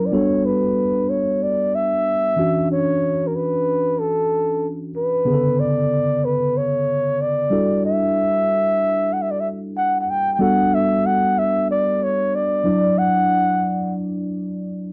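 A dry, close 1970s-style studio sound with light reverb frames this short cut from a longer pop piece, its straight 4/4 feel carrying an urban, nocturnal mood over chords such as A13sus4, Dmaj9, Bm9 and Em11. A breathy, dark flugelhorn sits up front as the solo melody, with light vibrato, soft attacks, scooped notes and a whispered intimacy, its line touched by slapback echo until 13.9 seconds. Beneath it, a mellow tine electric piano with analog chorus plays clean accompaniment through its built-in speakers and carries on alone to 14.9 seconds.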